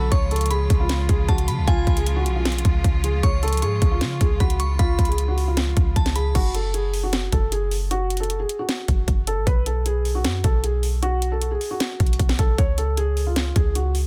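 A felt-muted upright piano carries a soft, dark melody with audible action noise through low-pass filtering and delay, joined until 6.3 seconds by a glassy FM synth bell with chorus and lush bowed strings holding sustained chords, while a deep, boomy 808-style bass and an up-front trap kit of hard-clipped kick, sharp snare and metallic hats drive this melancholic half-time trap excerpt at 154 BPM in F# harmonic minor, moving from C# to F#madd9 at 6.4 seconds in a dense, heavily limited, dry mix.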